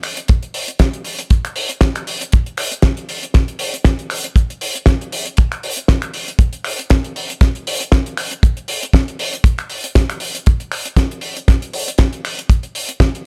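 A damped 70s drum kit opens this groovy, sunny nu-disco excerpt at 118 BPM in 4/4 with finger snaps, hi-hat and a fat snare, its warm, rolled-off top sitting up front over lightly swung sixteenths, joined at 0.3 seconds by a tight, dry acoustic kick drum that carries the most weight, both touched with studio reverb in an otherwise close-sounding mix.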